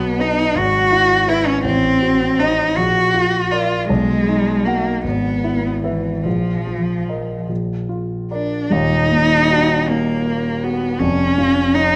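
A rich, bowed cello sings an elegiac, yearning melody over a dark, mellow concert grand piano with deep bass, both up front from the start of this slow romantic classical passage in 6/8, moving with rubato at 48-56 BPM by the dotted quarter in Eb minor. The cello's soft attack, vibrato and expressive portamento carry the line above the piano's accompaniment, whose harmony drifts through B, E/G#, Adim7 and a Bbsus4 that settles onto Bb. At 8.7 s the music turns to a new section on Ebm, moving to Db/F, all set in a moderate recital hall reverb.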